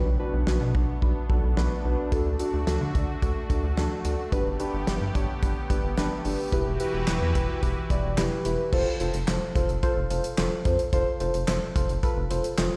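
Upbeat and bright, this synth-pop excerpt at 109 BPM pairs muted, felt-like synth keys treated with chorus and phaser and a rubbery, bouncy square bass with a lush, detuned unison pad that holds sustained chords over Bm7, D, Gadd9 and Emadd9 until 8.7 seconds, while a dry, damped 70s drum kit with a fat snare, tight kick, dark cymbals and handclaps enters at 0.5 seconds and carries through a shift to F, all set in a stone-room reverb as if played through a big sound system in a bare room.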